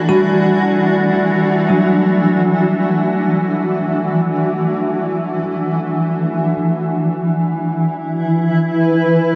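Floating in free time, this melancholic, spacious ambient fragment is cut from a longer piece and tuned to A4 = 441 Hz. Up front, a cloudy, granular pad holds sustained chords for its full 9.4 seconds, its detuned unison voices blurred and evolving over an Em9 harmony that gives way to a bare E5 at 6.5 seconds. Behind it, a calm organ-like drone of detuned sine tones sits in the background with ensemble chorus and its own reverb, lasting until 6.7 seconds. A bell-like tine electric piano plays bright, clean arpeggios through phaser and tape echo until 6.6 seconds, leaving the pad alone for the closing stretch. The whole recording is bathed in a huge, wet reverb with an eight-second decay and carries the worn warble and pitch drift of old cassette tape.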